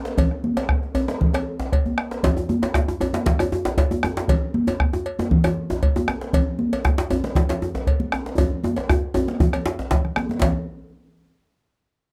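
This West African traditional drum ensemble piece, cut from a longer performance, has an earthy, powerful mood in a straight 4/4 feel. A djembe with metal rattles opens at 0.1 seconds, sounding warm and deep yet distant, as if heard across a large room. The deep, dark bombo sits close and up front as the loudest part, joined by bright, high-tuned congas with a thin-skinned voice and a dry, metallic cowbell set lower in the mix. A second djembe, tight and cracking with its own metal rattles, arrives at 2.2 seconds after a short drum fill and stands forward in a small-room sound. A longer fill begins at 8.4 seconds, leading toward a brief new section, all within a dry, close studio sound from the 1970s and a moderate room ambience.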